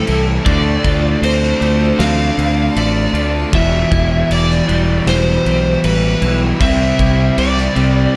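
This brooding, cathartic post-rock excerpt at 78 BPM opens with an overdriven slide guitar melody, played with fingerpicks and carrying a slapback echo, over a very quiet, cloudy granular pad and clean electric guitar arpeggios treated with ensemble chorus and slapback echo. Behind them, an overdriven semi-hollow guitar and a bright fuzz guitar play a riff, while a growling, overdriven fingered bass sits up front and a huge acoustic kit with a fat snare, punchy kick and crash cymbal comes in at 0.1 s. The chords move from Dm7 through Em to Cmaj7 in light reverb and studio ambience.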